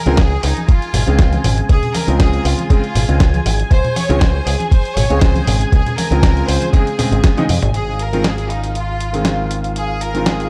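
A gritty, thumpy electronic kick sits up front in this feel-good, groovy nu-disco excerpt, with a lightly swung sixteenth-note feel, until it drops out at 7.3 seconds; alongside it are a punchy, envelope-filtered picked electric bass, a dusty soul sampler-style kit with a medium-tuned snare, hi-hat and toms, and congas tucked in the background. A biting, earthy chamber violin section carries the melody through tape echo over lush sawtooth string-machine chords with ensemble chorus and sidechain pumping, while a smooth vintage grand piano adds short-sustained accompaniment through delay. After a drum fill at 7.5 seconds, a filter sweep runs across the string machine from 7.7 seconds, all in a dark, lightly reverberant production.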